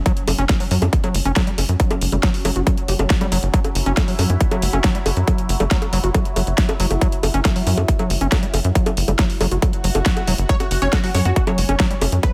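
A punchy, overdriven electronic kick drives straight 4/4 at 138 BPM up front, joined by a layered big-room dance kit of bongos, hi-hat and a huge overdriven snare in small room ambience, in this driving psychedelic trance passage cut from a longer track and built on an F#5 chord, where a tight sequencer bass of sawtooth and square-wave plucks runs beneath a squelchy, resonant overdriven acid bass riff with delay and sidechain pumping, a morphing, warbling wavetable pad with phaser and reverb hangs in the background, a faint electronic swell arrives at 9.8 s, and from 10.5 s an airy, detuned supersaw stab carries the melody with phaser, delay and sidechain pumping.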